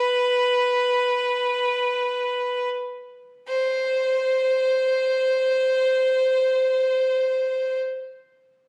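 In free time, this Celtic folk fragment drifts along, slowing down over its first 3.5 seconds before a new section opens at 3.5 seconds. A single bowed fiddle plays solo from 0.0 to 7.8 seconds, staying within a narrow span from B4 to C5. Its tone is bright and biting, with a light vibrato and an intense, up-front presence, touched by a slapback echo. The fiddle sits in a moderate recital hall reverb with a decay of 1.6 seconds, and the phone-in-the-room capture adds a club-like ambience. The mood is nostalgic and pastoral, like a brief glimpse cut from a longer piece.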